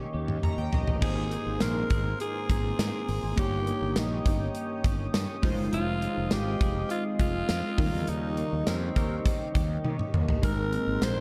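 Opening on a drum fill and a glossy synth-keys flourish over an Eb7 chord, this nostalgic, romantic 1980s-style pop excerpt at 102 BPM in Ab major sets a raspy, gritty alto saxophone melody with tape echo against chorused pulse-wave synth keys, a resonant sawtooth pad with a filter swell, slow attack, chorus and phaser, a very quiet twangy twelve-string electric guitar riff, a growly fretless bass and a big gated 80s drum kit up front. A tight horn section adds brief background stabs at 8.7 seconds during a band accent that runs from 8.1 to 10.4 seconds, before the harmony returns to Abadd9 at 10.4 seconds.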